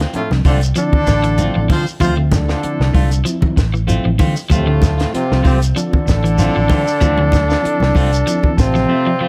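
A short, intense afrobeat excerpt at 96 BPM in D minor opens with a dark, punchy-kicked cocktail drum kit, a round, up-front fingered bass, grainy shekere and clean hollow-body guitar stabs, quickly joined by a brilliant trombone section, a reedy tremolo electric piano, a scooped, vibrato-laden trombone melody, a distant trumpet, damped congas and a slightly broken-up picked guitar from 0.8 seconds, all driving over a single Dm7 until the electric piano fills at 8.3 seconds.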